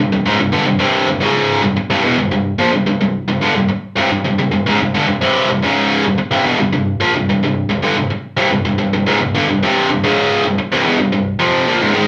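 A tight, bright, distorted electric guitar carries this heavy, epic metal excerpt alone from 0.0 to 12.1 s. The guitar is picked and double-tracked, sitting up front as it opens on a C5 chord and works within a low range from C2 to Ab3. The straight 4/4 groove moves at 109 BPM, and a moderate small-room reverb lends the sound a compact sense of space.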